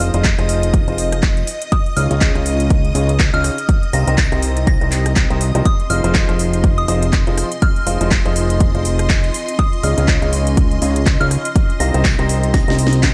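This bittersweet, energetic piano house excerpt opens with a clear, woody upright piano riff, shaped by sidechain pumping, a low-pass filter and dub echo, over a fat, detuned analog bass, shimmering vintage string-machine violins and a very quiet, cloudy granular pad in a digital ambience. A punchy, tape-warm electronic kick joins up front at 0.2 s beside a swung house kit of cracking snare, metallic hats, handclaps and rim clicks, while a soft, pure FM synth bell melody sits in the background with chorus, phaser and dub echo. A drum fill closes the cut at 12.5 s.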